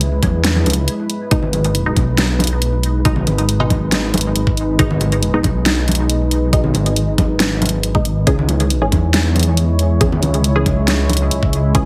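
Heavily compressed with a radio-like squeeze and a light touch of reverb, this short cut from a longer deep dubstep track has a cavernous, brooding mood in G# minor, moving at 138 BPM in a half-time 4/4 feel. Up front, a detuned sawtooth bass rumbles and beats with a saturated, dark weight, while a knocking, overdriven electronic kick and a layered dubstep kit with hi-hat and a huge, distorted snare drive the groove through studio reverb. Behind them, a mellow, moody pad holds sustained chords with a slow attack, chorus and its own reverb, and a set of bright, vintage-toned congas sits in the background, trailing dub echo. After a brief break from 0.9 to 1.3 seconds, a filtered dub chord stab enters at 1.3 seconds: a resonant, wave-folded pluck with a short decay, coloured by phaser and echo. The harmony moves from C#m to G#m and returns to C#m at 8.3 seconds.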